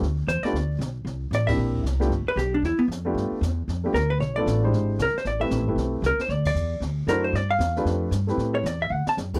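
A dry, close 1970s-style studio sound frames this brisk, sophisticated small-group swing and bop cut at 230 BPM in G mixolydian, taken from a longer piece. A dark, clean, compressed hollow-body electric guitar carries the picked melody from 0.3 seconds, up front alongside a natural-sounding baby grand piano comping chords like Bm7b5, E7alt and D7 and a woody pizzicato upright bass. A brushed drum kit with dark cymbals, a high-tuned snare and a boomy kick sits further back, with band accents at 1.5 seconds and a drum fill at 8.9 seconds.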